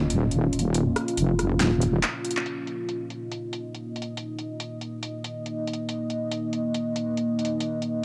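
Meditative and heavy, this deep dubstep excerpt at 140 BPM sways in a swung half-time feel as a dark, detuned sawtooth pad with a sub octave holds sustained chords under chorus, reverb, sampler grit and cassette haze, while a saturated, compressed wobble bass throbs until 2.0 s, then a drum fill and break lead to a band accent at 2.4 s, with the layered electronic kit of fat snare, metallic filtered hats, handclaps and rim clicks sitting tape-softened in a lightly reverberant home cassette recording.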